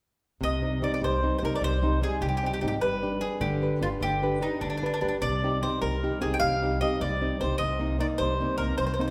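Italian folk serenade in C minor at 100 BPM in a straight 6/8, wistful and passionate, with a bright, picked bowl-back mandolin carrying the melody up front over fingerpicked classical nylon-string guitar and a woody, thumpy pizzicato upright bass, moving through Cm, G and Cm7 in a wet recital-hall reverb, cut from a longer piece.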